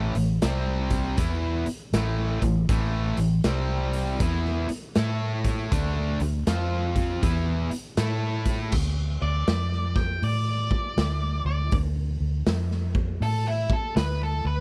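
A bright, double-tracked, overdriven stack guitar riff drives this gritty, raunchy excerpt of swung blues rock and southern rock at 80 BPM, over a round, foam-muted fingered bass and a saturated garage drum kit with a punchy kick and pumping stone room, until the riff stops at 8.7 seconds and a dark, distorted octave-fuzz lead guitar with slapback echo takes a solo from 9.2 seconds in a dry, up-front mix.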